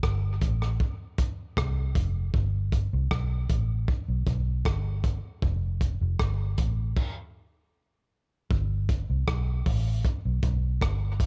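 Dark, dry and up close, this laid-back, spacious dub reggae excerpt at 78 BPM in 4/4 pairs a round, foam-muted vintage fingered electric bass, amped and low between F1 and C2, with a gritty, saturated breakbeat kit of tight kick, rim click, hi-hat and dusky crash, both parts dropping out for a stop from 7.0 to 8.5 seconds before the groove returns with a new section until 11.3 seconds.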